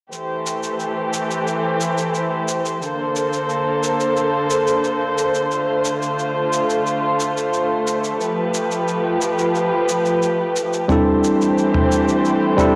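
Relaxed and warm, this sunset chillout excerpt in C major at 89 BPM sets dark, veiled con sordino strings holding bowed chords with vibrato over a bed of gritty, compressed electronic shaker and toms in studio reverb, moving through C6, Bbmaj9, F6 and G9 before a bright, barky tine electric piano with tape echo enters up front at 10.9 s, all bathed in a lush hall reverb and the warbling pitch drift of worn cassette tape.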